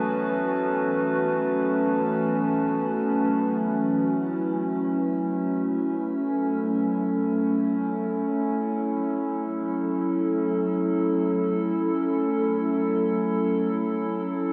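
A warbly, lo-fi cassette haze washed in plate reverb frames this weightless ambient excerpt in free time, where a nostalgic tape-like pad holds sustained chords up front, with chorus and shimmer reverb, throughout, while a calm organ-like drone sits in the background and a glassy, ethereal glass harmonica adds texture until about 3.5 seconds, after which the pad carries on alone to 14.5 seconds.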